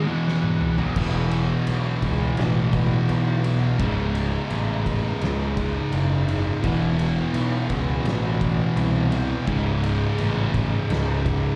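A slow, straight 85 BPM pulse in 4/4 drives this ominous, sludgy stoner and doom metal excerpt, cut from a longer piece and tuned slightly flat to A4 = 438 Hz. It opens with a short break in which an oversized, low-tuned drum kit plays a fill starting at 0.3 seconds. At 1.0 seconds the main section lands, and a growly, overdriven fuzz bass enters up front, its bright, direct-and-amped tone anchoring the low end. Three guitar parts carry the riff between E5 and C#5 chords throughout: a bright, double-tracked distorted electric guitar and a thick fuzz guitar sit in the background, while a second, very quiet fuzz guitar adds further weight. The drums sound gritty and saturated, with dark cymbals, a fat snare and a punchy kick ringing in a stone-like room. Underneath, a fat, lightly overdriven tonewheel organ holds sustained chords through a fast rotary speaker, with audible key click, and the whole performance comes across as a live gig heard through a club PA with small-room reverb.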